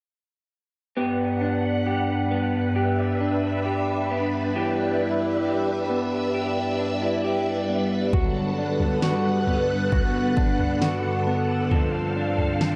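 A swirling, phased string machine stands out from the start of this ethereal dream pop excerpt, holding soft-attack sawtooth chords with long release and a bright, warbling vintage shimmer shaped by ensemble chorus and phaser. Beside it, an electric guitar through a small old amp picks arpeggios from 1.0 seconds, its slightly broken-up, lo-fi tone colored by analog chorus and slapback echo. The slow 67 BPM pulse in 4/4 drifts through G major harmony, moving from Em7/G to G6, then Gmaj7 and F6/G. At 8.1 seconds a pop drum kit enters with a punchy kick, fat snare and toms, its electronic, layered sound re-recorded in a large room and placed up front. A wet spring reverb with a 2.4-second tail bathes the dark production in a dreamy haze.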